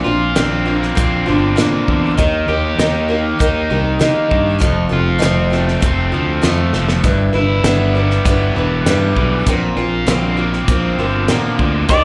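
Folk rock with a heartland rock lilt, this hopeful, nostalgic passage, cut from a longer piece, sounds like a live club gig heard through the venue's PA, with a boxy, bright picked acoustic archtop guitar (complete with finger squeak) and a crunchy, double-tracked overdriven electric guitar riff, both touched with slapback echo. A growly, up-front fingered bass and a dry, damped 70s drum kit with a fat snare and tight kick drive the steady straight feel, and the drums play a short fill at 6.7 seconds as the chords move from Bbadd9 through Eb, F and G6. At 11.9 seconds a clean, compressed pedal steel guitar appears for a brief, slide-played single high note.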